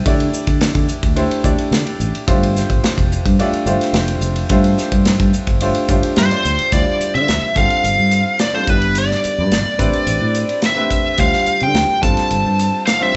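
A straight 4/4 groove at 108 BPM drives this intense, nocturnal stretch of electric jazz fusion in D dorian, cut from a longer piece. A modern acoustic drum kit sits up front with a punchy kick, medium-tuned snare, hi-hat and ride, its top end rolled off, while a fingered electric bass, heard both direct and amped, holds down the low end with a warm tone. A bright, brilliant baby grand piano comps through suspended and extended chords such as Dsus4, G9sus4 and Dm11, its long sustain ringing into the moderate reverb of a large studio room where the band plays live together, and it takes a short fill at 5.6 s. At 6.2 s a biting, overdriven lead guitar enters up front with a picked melody in a high register. The harmony then shifts at 6.7 s into a new passage moving through Em7/G and Am11 before returning toward Dm7 and G9sus4.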